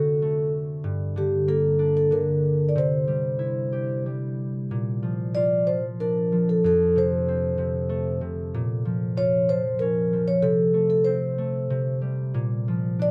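In a gently rubato 3/4 at 94 BPM, this sleepy, tender lullaby for children drifts along with an unhurried sway. A vibraphone struck with soft mallets, its motor off, carries the melody between G4 and D5 with a mellow, metallic tone that sits up front. Beneath it, a concert harp supplies fingerpicked accompaniment from F2 to G4, its acoustic, warm strings ringing close alongside the vibraphone throughout. The harmony moves from D7 to Gm and C, then opens into a second passage at 4.7 seconds that passes through Bb, F and a darker Bbm before settling on Am/C, C5 and Bb. Close, detailed microphones and light reverb give the pair an intimate, cradling sound in this short excerpt cut from a longer piece.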